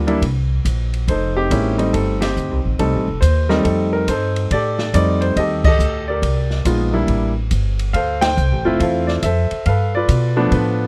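Close, detailed microphones and very little reverb give this short jazz piano trio fragment an intimate, dry sound, cut from a longer piece. The mood is relaxed and swinging, with a lilting swung feel in 4/4. The grand piano carries the melody, sounding present and polished up front, while the pizzicato upright bass sits equally forward with a woody, warm tone from its steel strings. The acoustic drum kit, heard through crash and ride cymbals, hi-hat, snare and a boomy kick, sits lower in the mix with a dark, smooth, small-room character, its medium-tuned snare and rolled-off top keeping it mellow and warm. The harmony moves through suspended and extended chords such as Bbsus2, F9, C9, Dm7 and G9, and the whole trio lands together on accents at 2.1, 5.6 and 8.2 seconds.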